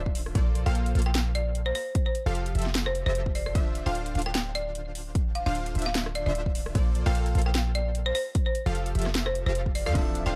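A half-time 4/4 groove at 150 BPM with a light 16th-note swing drives this bittersweet, lush future bass clip, built on a punchy, up-front electronic kick and a trap kit of sharp snare, metallic hi-hats, rim clicks and crash cymbal. A deep, boomy 808-style bass, a bright detuned supersaw stab riff and a background sawtooth pluck playing arpeggios pump with the sidechain, while a woody, hard-mallet folk marimba carries the melody from 0.7 seconds through tape echo. The chords move through Bbmaj9, Fmaj9 and Dm9 in a dark, warm, dry mix, and a warm, natural baby grand piano slips in at 9.9 seconds just before the cut.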